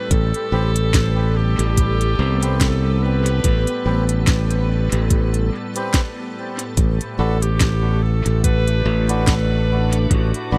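Hazy and spacious, this ambient dub excerpt sets a present clarinet melody with dub echo over a calm, detuned organ-like pad that holds chorused chords from Am9 to Bm/A at 6.8 seconds, while a bright, growly fingered electric bass sits up front beside a soft electronic kick and a tape-toned kit of woody snare and crisp hi-hats, with reedy, breathy melodica stabs echoing in the background.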